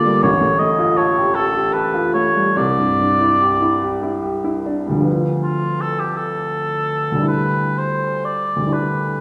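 A mellow oboe with light vibrato sings the melody over an open, long-sustaining baby grand piano in this mysterious, wistful impressionist classical duo, drifting in a rubato 3/4 through chords like Aaug7 and Dm6 before a new section begins at 5.1 s, the pair heard from further back in a recital hall's lingering reverb in this short passage cut from a longer piece.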